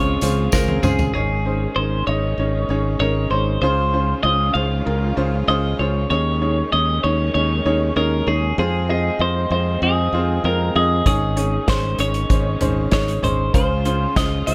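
A straight 4/4 pulse at 97 BPM drives this uplifting, hopeful slice of piano-driven pop, cut from a longer piece. An acoustic drum kit played with bundle sticks, with a punchy kick and a medium-tuned snare, enters at 0.2 seconds alongside a jingly tambourine and plays a fill from 0.5 seconds. Both drop out at 1.1 seconds, and the kit returns at 11.1 seconds. A clean, compressed, twangy twelve-string electric guitar carries the melody up front. A clear, woody, boxy upright piano and a punchy, direct fingered electric bass anchor the harmony, which moves between Dbmaj7, Absus4 and Fm. A very quiet picked jumbo acoustic guitar with old strings plays a full-bodied riff only in the opening moments, while a distant, lush string section sustains chords with expressive vibrato and portamento, all within light reverb.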